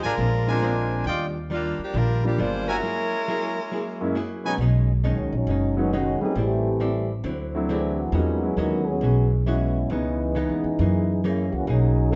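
Set in a moderate large-studio reverb with a soft, rolled-off top, this joyful swinging jazz fragment opens with a bright saxophone section carrying the melody over warm trumpet-section stabs, a dark, clean hollow-body archtop guitar and a woody up-front upright bass, joined at half a second by a natural, deep-bassed grand piano, until the saxophones and trumpets drop out by 4.5 seconds and a veiled, bucket-muted trombone section takes a tight, close-miked solo line from 5.0 seconds to the end at 12.2 seconds.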